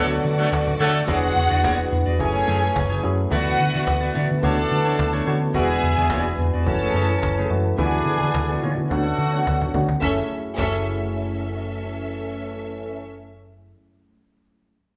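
Glamorous and driving, this disco excerpt in F# minor moves at 107 BPM, with lush, up-front bowed strings and mellow French horn chords over a round, dark hollow-body bass, while a distant pop-style horn section punches out stabs. A reedy, barky electric piano with fast tremolo and a clean, picked guitar sit in the background, and very quiet low-tuned congas entering at about 0.2 seconds plus a woody cajon with soft hands joining at about 0.5 seconds carry the percussion until both stop at 10.7 seconds. The band plays live in one room with a wet large-studio reverb, opening on an accent, then running a long filter sweep over rich ninth chords that ends in a drum fill at 9.5 seconds.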